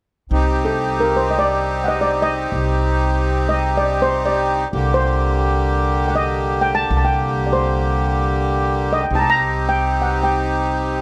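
Festive yet bittersweet, this short klezmer fragment cut from a longer piece drifts in free time, with an up-front reedy accordion and a woody pizzicato upright bass holding a low pedal beneath a mellow, shimmering double-seconds steel pan played with soft rubber sticks, all set in a moderate studio ambience as the harmony moves from Cm to Gm/C and back.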